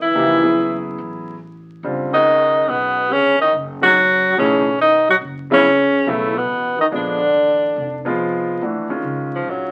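Crackling like a very old 78 rpm record and bathed in wet studio reverb, this cool, searching modal jazz excerpt swings at 142 BPM in 4/4, with a punchy, up-front tenor saxophone carrying the subtoned, lightly vibratoed melody over a distant, roomy trombone second line of scooped notes that drops out at 8.2 s, a clear, intimate grand piano whose action noise can be heard, and a woody pizzicato upright bass, before the saxophone takes a brief solo from 8.6 s as the harmony moves from F#m9 to Ebm9.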